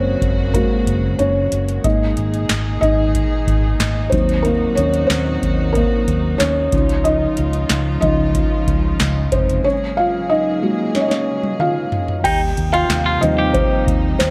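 Piano-driven pop with an uplifting, hopeful mood, heard here as an excerpt from a longer piece in a straight 4/4. A felt-muted upright piano sits up front throughout, its thick felt giving a soft, mellow, intimate tone with audible action noise, and it carries the featured solo across the whole passage. Beneath it a chamber string section holds sustained chords with a soft attack, light vibrato and a sul tasto bow, while a vintage fingered electric bass adds a round, punchy, foam-muted low end. An analog drum machine enters at 0.2 seconds with a booming deep kick, crisp snare, metallic hats, handclaps, toms and crash, its snare, clap and hats set in a short room, and it plays a fill from 10.9 to 12.2 seconds. At 12.2 seconds the harmony shifts to a new section, and a clean, compressed, twangy electric guitar slips in with a brief picked riff at 12.3 seconds. The chords move through colourful added-ninth and suspended voicings, and a moderate plate reverb gives the mix a gentle sense of space.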